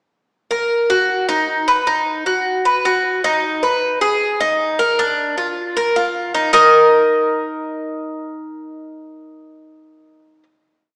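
A straight four-beat pulse drives this short, danceable Latin piece with a sultry mood, carried entirely by a solo Cuban tres that plays an arpeggiated guajeo from 0.5 s over a minor-key progression before settling on a final chord at 6.5 s. The tres sounds bright and metallic, its picked double strings with some octave doubling placed up front. A wet, reverberant hall surrounds it, though the overall sound has a small-speaker quality, and the instrument rings out until 10.4 s.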